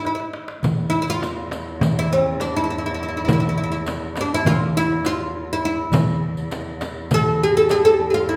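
A woody, fretless oud with double strings sits up front, plectrum-plucked and bright as it carries the melody from the opening of this festive Turkish makam ensemble cut, set in E makam hicaz in a straight 9/8 at 204 BPM (eighths) and tuned to A4 = 435 Hz. A small clay-shell darbuka with natural skin, struck with hard hands, opens with a short fill at 0.1 s, and from 0.6 s a close, dry frame drum and a jingling riq join it in the background. Beneath them a single bowed cello holds a smooth, distant E2 drone with vibrato, all wrapped in a wet recital hall reverb.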